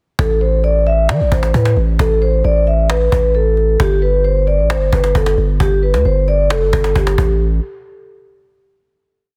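A half-time trap beat at 133 BPM, played on a woody, hard-handed cajon with faint snares and fast hi-hat rolls, carries this eerie, dark hip hop piece, where deep, up-front 808-style sine bass holds long sub-bass notes with pitch slides that follow the kick, and a close-miked vibraphone struck with soft mallets rings out a metallic, looping melody like a sample through a low-pass filter and digital delay, all in light small-room reverb with a dense, heavily limited modern master, before the verse gives way to a final hit at 7.4 seconds.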